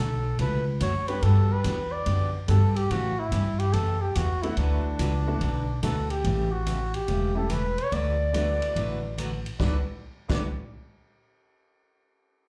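A flugelhorn, a picked steel-string acoustic guitar and a pizzicato upright bass open this playful, down-home western swing together, with the swinging big-band drum kit joining at 0.4 seconds. The close-miked flugelhorn carries the melody up front in a jazz style, its soft attack, light vibrato and scooped notes giving it a warm, easygoing voice. The full-bodied dreadnought guitar supplies warm, fresh-stringed accompaniment, while the dark, woody bass sits prominently beneath, and the drums bring a punchy kick, a medium-tuned snare, hi-hat, ride and crash. At 1.1 seconds a detuned, jangly honky-tonk upright piano slips in behind the others with a vintage, open tone. Slapback echo touches the horn, guitar and piano, and the whole band sounds like a live gig heard through the venue's PA, wrapped in club reverb as the chords move from Dmaj7 through A7 to D69 before the clip is cut from the longer piece.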